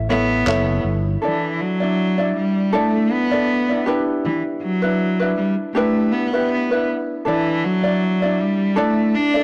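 A bright, thumb-plucked ukulele and a growly, amped fretless electric bass open this carefree acoustic pop excerpt in D major at 80 BPM, set in 4/4 with a gentle 16th-note swing. A bowed cello takes the melody almost at once: a single player with a focused, smooth-topped, warm tone and vibrato. Gritty, sampler-style electronic handclaps appear only briefly near the start. The bass stops at 1.2 seconds as the harmony settles onto Dsus2, and from there the ukulele and cello carry the sunny mood through G6 and back to Dsus2, with both placed up front. Light reverb and studio ambience surround a blown-out, overdriven recording, while tube saturation colours the bass.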